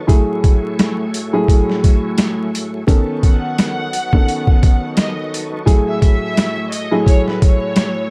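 Tough yet reflective, this boom-bap hip-hop piece is cut from a longer work and moves at 86 BPM in 4/4, with a 59% swing on the sixteenths and a home in F# dorian. A sampler-style drum kit sits up front, compressed, pitched down and overdriven, with a thumpy kick, a high-tuned snare and hi-hat giving it a gritty punch. A dark upright piano, woody and boxy with a cassette-tape colour, plays accompaniment over the chords F#m9/A, B9 and back to F#m9/A, while a smooth, clean tonewheel organ holds sustained chords beneath it through chorus vibrato and a slow rotary speaker. At 3.2 seconds a lush violin section enters with the melody, bowed with a soft attack, vibrato and expressive portamento, set distant in the mix and trailed by analog delay. The whole production feels dark and warm, wrapped in small-room ambience and vinyl crackle.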